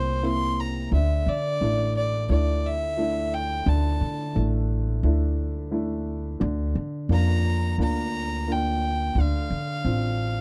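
A bowed solo violin, biting and nasal with an airy edge, carries the melody from the first moment over a woody upright piano with short sustain and a plucked upright bass on steel strings, all close and up front. This melancholic, heartbroken acoustic folk-pop ballad in D minor moves at a straight 87 BPM in 4/4, passing from C7 to Dsus2, then Bb/D at 6.4 seconds and Dm7 at 9.2 seconds. The sound is dry and intimate, like a close 1970s-style studio recording, and the passage is cut from a longer piece.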